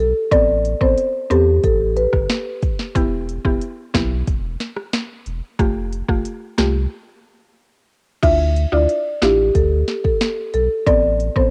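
Recorded at home onto cassette with light reverb, this bouncy, tough dancehall excerpt sits at 91 BPM in a straight 4/4, in D dorian with tuning at A4 = 444 Hz. A mellow marimba played with soft mallets carries the melody up front, its woody rosewood tone colored by cassette tape and tape echo; it drops out at 2.1 seconds and returns at 8.2 seconds as the second section begins. Beneath it, a round, sine-like sub bass holds the low end with a fast attack and sustained, deep notes, while an electronic afro-pop drum kit with a deep kick, sharp snare, smooth hi-hats, rim clicks and crash cymbal sits up front with a tape-softened edge. A detuned FM pluck with a triangle-like, full-bodied, percussive character fills out the accompaniment with chorus and cassette coloring. The harmony moves through Amadd9, Em and Fadd9 before a break at 6.9 seconds, then shifts to Dmadd9 and back to Amadd9.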